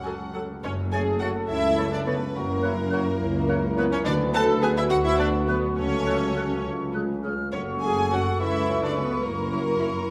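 Set in a wet recital hall reverb, this playful, whimsical film cue in 6/8 has a magical, quirky mood and is cut from a longer piece. A very quiet, lush violin section carries the melody over a rich viola section's accompaniment, while a louder second violin section, a clear, distant clarinet, a dark cor anglais entering at 0.6 seconds and an airy, silvery flute arriving at 0.9 seconds weave second lines. Beneath them, a dark French horn section holds sustained chords, a thumb-plucked concert harp rings out arpeggios, and a cello section with expressive portamento, a bowed double bass section and a mellow tuba share the bass across minor-key harmonies.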